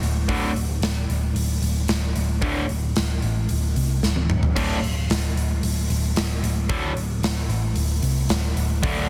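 Driving and aggressive, this short hard rock clip moves at 112 BPM in a straight 4/4, cut from a longer piece and built around a D5 power chord. A huge arena drum kit opens at the very start, its punchy kick, medium-tuned snare and bright cymbals sitting up front in a pumping hall room, with hi-hat, crash and toms all in play and a drum fill breaking through from 4.0 to 4.6 seconds. An overdriven electric guitar enters at 0.3 seconds with a picked, double-tracked riff between D2 and D3, its tone bright and up front. Underneath, a hollow-body short-scale electric bass, picked and amped, supplies a dark, round low end from D1 to C2. Light studio reverb frames the parts, all captured in a dense, heavily limited modern master.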